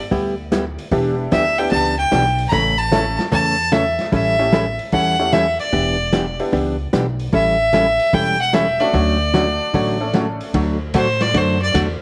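A clear, earthy bowed fiddle carries the melody with light vibrato and tape echo from 1.3 seconds, stepping into a brief solo at 10.5 seconds in this cheerful, down-home western swing fragment with a swung feel. Beneath it, a dark, clean, picked hollow-body electric guitar and a thumpy pizzicato upright bass on woody gut strings drive the accompaniment, while a detuned, jangly honky-tonk upright piano joins at 0.9 seconds. A muffled, lo-fi vintage drum kit with a tight kick, hi-hat, ride and snare sits in a small room, and light studio reverb wraps the whole performance.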